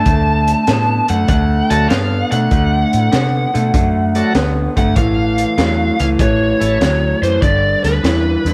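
A light reverb gives this short, gritty cut from a longer piece a touch of studio room around its swaggering electric blues shuffle, moving at 98 BPM in 4/4 with swung eighths in D major. Up front, a dark, overdriven lead guitar picks out the melody through a small cranked amp, while a second guitar through a small old amp plays a slightly broken-up, lo-fi riff low in its range with subtle chorus. A vintage fingered bass, foam-muted, round and punchy, sits beneath a saturated breakbeat kit whose high-tuned snare, tight kick and hi-hat have a rolled-off top. From 1.7 to 6.8 seconds a bright tonewheel organ adds shouting, lightly overdriven accompaniment with key click and a slow rotary speaker, set lower in the mix than the other parts. The harmony rests on D before moving to A and then G near the close.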